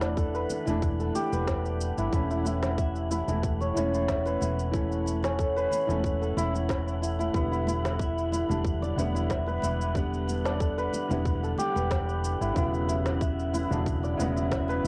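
A light reverb and the soft haze of a home cassette recording frame this short, earthy, meditative cut of organic downtempo, moving at 92 BPM in a straight 4/4. Up front, a shimmering, ringing santur plays arpeggios through a low-pass filter and analog delay, while a felt-muted upright piano gives mellow, intimate accompaniment, pumping gently under sidechain and bathed in plate reverb. A woody fretless electric bass, dark, round and growly with a hollow-body character, anchors the low end. An electronic snare with a woody tone, a shaker, and very quiet congas play from the start, and an electronic kick drum joins at 0.2 seconds with a tight, tape-warmed thump. Far in the background, a breathy, wind-like tuned noise texture hovers on a single high pitch with a slow attack and long release. The harmony rests on Em9, shifts to A69/E at 2.1 seconds, and settles on D6/E at 12.6 seconds, all anchored on E.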